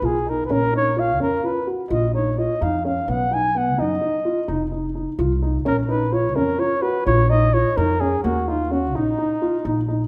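Pensive and restless, this contemporary chamber piece moves in an uneven 11/8 metre at 256 BPM counted in eighths, rooted in Bb phrygian with a slightly lowered tuning of A4 = 438 Hz. A breathy flugelhorn carries the melody as soloist, its whispered, soft-attack tone and jazz-style vibrato sitting intimate and up front. Beneath it, a dark concert grand piano supplies arpeggios with a boxy, mellow character and short sustain, while a pizzicato upright bass with steel strings adds a woody foundation in the low register. The harmony drifts from Bmaj7#11 through Bbm, B and F5 before returning to Bbm and settling on Eb5. All three parts play together throughout this roughly 10-second passage cut from a longer work, set in a wet recital hall reverb with a 1.4 s decay.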